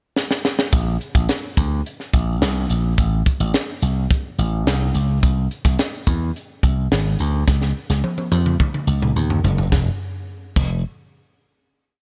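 A bright, amped slap bass leads this short, polished 1980s jazz-funk pop piece, entering at 0.7 seconds with an agile, syncopated line in a low register that slips in chromatic approach notes. Beside it, an acoustic fusion drum kit in a studio room sets a crisp sixteenth-note groove in straight 4/4, with a punchy kick, a high-tuned snare, hi-hat, toms and dark crash cymbals. The drums open with a short fill in the pickup bar before the verse, then play a longer fill from 7.5 to 9.7 seconds that leads into a held final note. Both parts sit up front in an airy, glossy mix with little reverb and a soft top end. The mood is breezy and glossy, and the tuning sits at A4 = 435 Hz.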